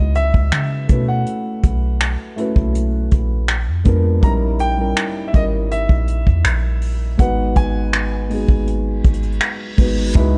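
A clear grand piano carries the melody, touched with digital delay, over a dark, felt-muted upright piano with audible action noise and a round, deep 808-style bass, opening this longing, sensual contemporary R&B excerpt in a straight 4/4. A soft brush kit joins at 0.1 s, up front and natural in a small room, with finger snaps, hi-hat and a tight kick, while the harmony moves from C#m11 to G#m7 under light reverb. The grand piano stops at 9.0 s, and an electronic reverse cymbal sounds from 9.1 s to close the passage.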